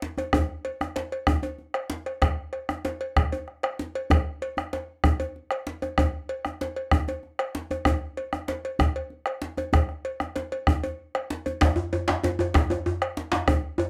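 This earthy, powerful West African drum ensemble passage in 12/8, cut from a longer piece, features a round, up-front bombo alongside a deep djembe with metal rattles, joined by a close, metallic cowbell that comes in at 0.2 s. At 11.6 s a second, medium-tuned djembe with its own rattles enters, its vintage, band-limited tone sitting up front as the music moves into a new section. The sound is dry and close, like a 1970s studio session, with only light reverb and a small-room feel on the drums.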